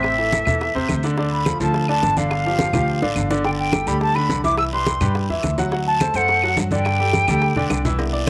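An airy silver concert flute carries the melody in this festive, danceable salsa fragment, its soft attack, lifted highs and expressive vibrato floating over the band until it falls away at 7.8 seconds. Close behind, an upright piano supplies brilliant, polished accompaniment, sitting up front with an intimate, woody tone and audible action noise. A dark, pizzicato upright bass with steel strings anchors the low end. The percussion section fills out the groove in the background: low-tuned congas with a thick skin and soft hands, tight high-tuned bongos with cowbell, and woody claves, joined by a raspy guiro. Drum fills mark 2.6 and 7.1 seconds, while the harmony moves from A minor through G and C major seventh to D7 before settling on a suspended G. Light reverb and a small-room ambience frame this short cut from a longer piece.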